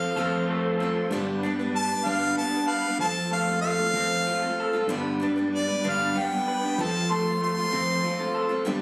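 A 6/8 pulse, felt in slow dotted-quarter beats with a straight feel, carries this nostalgic, hopeful rock excerpt as the harmony rocks between F and G. A clear, up-front harmonica in pop style carries the melody and takes a solo from 1.1 s through the end. Beneath it, a picked steel-string acoustic guitar adds bright, fresh-stringed accompaniment with audible finger squeak and an auditorium-like presence. An electric guitar through a small old amp plays a fingered riff with a warm, slightly broken-up, lo-fi, compressed tone and a vibrato effect, while a fingered electric bass sits round, direct and amped on the low F and G. Very quiet in the background, a reedy tonewheel organ holds clean sustained chords with chorus vibrato, key click and a fast rotary speaker. The whole performance was captured on a phone in the room, bathed in a moderate large-studio reverb.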